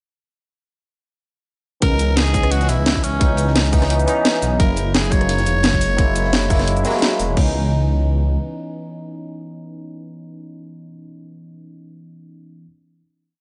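A raspy, growling tenor saxophone carries a jazz-style melody of motif-based phrases with delay in this rolling, melancholic liquid drum and bass piece, whose drop begins at 1.8 seconds over a deep, rumbling detuned saw bass playing long gliding notes. Beneath them, a tight electronic kick and an up-front garage kit with a cracking snare, cabasa, rim and crash drive a two-step groove, while a very quiet, gritty breakbeat loop sits low in the mix. A barky, lightly overdriven tine electric piano with chorus and delay holds closely voiced chords with syncopated pushes, and after the drums fall away at 7.4 seconds it sustains a final chord until 12.7 seconds in a lightly reverberant space.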